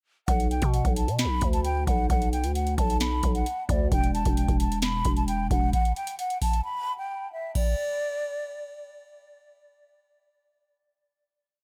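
A menacing, hard-hitting trap piece in B minor opens at 0.3 seconds with a breathy concert flute, a growling 808-style bass and a booming analog drum machine all arriving together at 132 BPM in a half-time feel. The flute carries an expressive, looping melody with vibrato and tongued notes, repeated like a sampled loop and trailed by dub echo, its highs lifted and its tone warm. The drum machine sounds as if re-recorded in a large room, with a deep kick, crisp snare, metallic sixteenth-note hi-hats and crash cymbal in a bouncy beat. The buzzy, sine-based bass holds long sub-bass notes that follow the kick, with pitch slides. The hook moves from B minor to E minor, and the bass stops at 5.7 seconds before a brief break. After the drums finish, the flute's final note carries on until 8.9 seconds in an echo-heavy digital ambience.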